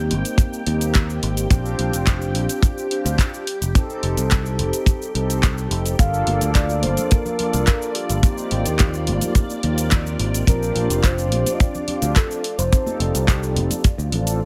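Cosmic and sleek, this 107 BPM nu-disco excerpt rides a growly, punchy picked electric bass, a tight up-front kick and a tape-warm house kit with handclaps, hi-hat and shaker beneath round, brassy synth brass and a lush, vintage string machine pumping to the sidechain over chords like Abmaj9, Bb69 and F9, before a soft octave-layered synth lead with vibrato and tape echo enters at 6.0 seconds, joined moments later by hard-handed congas in the background, all with little reverb.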